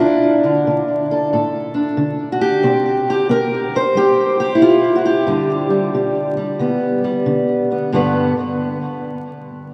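A dreamy, reverb-soaked sound fills this short cut from a longer acoustic country blues piece, with cathedral-like reverb trailing behind every note and vinyl crackle running through the mix. A fingerpicked steel-string acoustic guitar carries the music alone and sits up front, its dark, boxy parlour tone softened by a subtle chorus and delay. The mood is laid-back yet swaggering, moving at 91 BPM in 4/4 with a swing feel on the eighth notes. In G major, the harmony moves from D to C at 2.6 seconds and settles on G at 5.3 seconds, and the guitar spans from its low bass strings up into its upper register. A new section begins at 7.9 seconds, and the guitar stops at 8.3 seconds, leaving the reverb to hang in the air.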